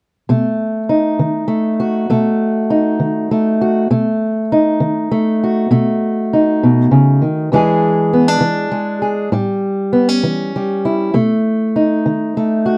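A rollicking, gritty blues excerpt in a slow, straight 12/8 feel, carried by a lone fingerpicked steel-string acoustic guitar that plays accompaniment from 0.3 to 12.8 seconds over B7, E7 and A7 chords. The guitar has a dark, boxy parlour tone, sits up front with audible finger squeak, and comes across in a dry, close 1970s-style studio sound touched by light reverb.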